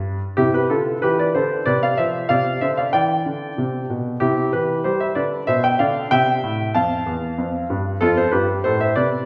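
Moving in a straight triple metre, this short cut from a longer classical-period piano sonatina has a graceful, playful character. A clear grand piano plays solo throughout, ranging from E2 up to A5, its tone clear and present as if placed up front. The harmony stays rooted in C, passing through F and G colours over a held C and a brief diminished chord before settling back and turning toward F at 8.0 seconds. The recital hall adds a wet reverb with a 1.6-second decay, and the listener seems seated further back in the room. The tuning sits slightly below modern concert pitch, at A4 = 436 Hz.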